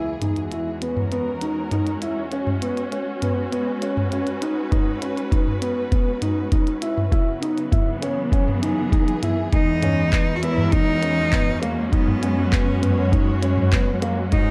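Lush, bowed string chords with expressive portamento and a dark, woody upright piano riff steeped in tape echo open this intimate, melancholic piano-and-strings electronica excerpt. They are joined by a minimal electronic kit of handclaps, clicky hi-hat and toms, before a muffled, thumpy kick lands up front at 4.7 seconds. The build-up breaks at 9.5 seconds into a drop where a clear solo cello carries the melody over a rich, vibrato-laden cello section holding the bass with sidechain pumping, the whole mix sitting in light studio reverb.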